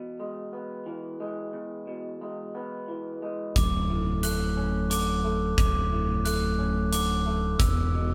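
A live band in one room with light reverb opens this cinematic, euphoric post-rock excerpt in a straight 3/4, as a twangy, slightly broken-up electric guitar through a small old amp plays lo-fi arpeggios alone over an E chord. At 3.6 s the music moves to Dmaj7 and fills out: airy, bell-like glockenspiel arpeggios struck with hard plastic mallets ring high above, a growling, overdriven fingered bass sits up front in the low register, and a huge arena drum kit adds a punchy kick and hi-hat with a pumping hall sound. The harmony lands on an E5 power chord at 7.6 s, and the drums stop shortly after at 7.8 s.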